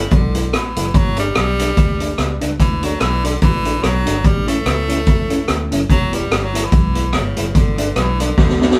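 A swung ska groove at 145 BPM drives this cheerful, joyful snippet cut from a longer piece, with an up-front street-band drum kit of high-tuned snare, boomy kick, rim click and hi-hat, and a round, punchy, foam-muted vintage bass underneath. An edgy tenor saxophone carries the pop-style solo melody with light vibrato, while a mellow, dark, clean electric guitar sits in the background with tape echo, moving through Em, G, D and A. The band sounds live together in a small room, and a drum fill closes things out at 8.4 seconds.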